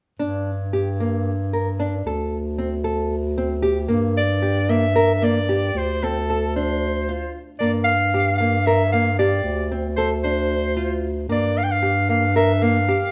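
Set in a straight 7/8, this restless, pensive contemporary chamber piece, cut from a longer work, opens with a small, fingerpicked nylon-string guitar playing arpeggios over a close-miked, mellow bass clarinet bass line with light vibrato, subtone and scooped notes. At 4.2 seconds a punchy, vintage-toned soprano saxophone enters up front with a vibrato-laced melody as the harmony alternates between G minor and D minor sevenths. Light reverb gives the trio a gentle sense of space.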